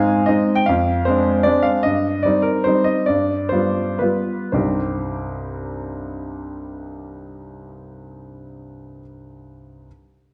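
Classical piano waltz in C minor and 3/4, elegant and wistful, with a rubato feel ranging from 109 to 158 BPM and tuning at A4 = 438 Hz, in which a solo grand piano, clear and worn and placed up front, moves from Ab through Dm7b5/F and Cm/G to G7, slowing down from 1.3 to 4.6 seconds before settling on Cm as a new section begins, heard in a wet recital hall reverb with a dark production in this short cut from a longer piece.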